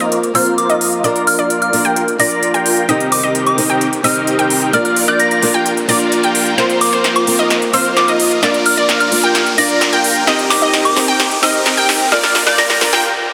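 A fingerpicked steel-string acoustic guitar, a lush unison pluck playing arpeggios, a huge, detuned supersaw riff and a punchy, overdriven big-room drum kit with crisp hats open this anthemic, triumphant festival progressive house build-up at 130 BPM in Bb major, with dub echo on the guitar, pluck and supersaw and filter sweeps on the pluck and supersaw over a Fsus4, Bb, Cm7 chord cycle. A soft, pure FM bell melody with chorus enters above at 0.3 seconds, a riser builds in the background, and a drum fill from 6.6 seconds drives to a break at 13.0 seconds marked by a reverse cymbal. The whole passage sits in a huge ambient reverb with a dense, heavily limited modern master.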